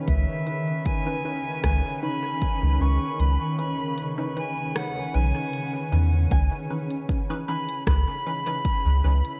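A straight 77 BPM pulse in 4/4 anchors this spacious, deep ambient dub excerpt in C# minor, with an overdriven electronic kick and a crisp, tape-toned organic electronic kit of hi-hat and rim click, while a round, up-front sub bass sits beneath; the kick drops out from 3.2 to 6.3 seconds. A cloudy, evolving granular pad holds a C#m9 chord with vintage 12-bit grit, and a drifting sine-like glass-harmonics texture adds calm overtones in the background until 6.3 seconds. A bright, reedy concert flute carries the melody through dub echo, a muted filtered chord stab sits behind it with phaser, and a ringing, thumb-plucked Celtic harp adds brief tape-echoed arpeggios from 6.3 seconds.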